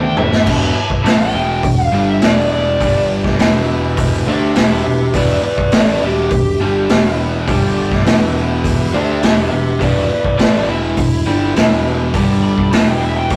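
A heavy, gritty blues rock and southern rock excerpt in E minor at 103 BPM opens with a warm overdriven slide guitar melody, a thick tonewheel organ holding sustained chords in the background through a slow rotary speaker with chorus vibrato and key click, a bright double-tracked cranked stack guitar riff and a punchy picked electric bass all sounding from the start, before a raw garage drum kit with a medium-tuned snare, punchy kick and rolled-off top enters up front with a fill at 0.2 seconds, driving a straight 4/4 groove that moves between Em and G5 in a rough, saturated rehearsal-room sound with moderate studio ambience.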